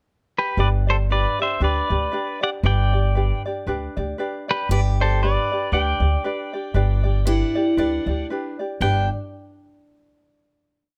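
Dreamy and relaxed, this short Hawaiian piece in G major moves at 117 BPM with a lightly swung 4/4 feel. Entering during a brief pickup, the clean, compressed electric pedal steel guitar sits up front with a motif-based melody of period phrases, played with fingerpicks, slide and volume swells and partly doubled in thirds. From 0.6 s, a light, fingerpicked ukulele strums eighths in open chord shapes, while a woody, growly pizzicato upright bass with steel strings holds a prominent two-feel of root and fifth. At 4.7 s, a bright, boxy parlour acoustic guitar adds a picked counter-melody, and the piece settles onto a final chord at 8.8 s, all in a lightly reverberant space with plate reverb on the guitars and ukulele.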